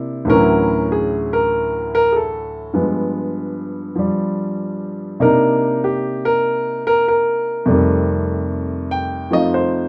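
Sophisticated and playful, this short cut from a longer solo jazz piece has a single warm, natural baby grand piano sitting up front in light reverb, swinging its eighth notes in 4/4 through rich chords that move from Dmaj9 to G7b9, Cm9 and F9 across its 9.9 seconds.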